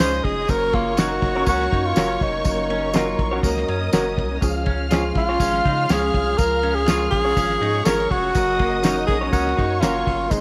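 Uptempo 1960s-style soul with a joyful, uplifting mood, this cut from a longer piece moves in a straight 4/4 over a harmony that shifts between Gb and Db. Up front, a breathy, close-miked tenor saxophone carries the melody with a dark, whispered subtone, scooped notes and vibrato, touched by tape echo. Behind it, a lush symphonic violin section bows a smooth second line, while a barky, reedy electric piano adds accompaniment with a fast tremolo, and a very quiet tonewheel organ holds mellow sustained chords with key click and a fast rotary speaker. A clean, picked semi-hollow guitar plays a riff, and a second guitar through a small old amp adds slightly broken-up, lo-fi stabs. A deep, saturated sub bass anchors the low end beneath a cloth-damped, thuddy drum kit with a fat snare, tight kick and dark cymbals, while a jingly tambourine glints over the top, all set in light small-room reverb.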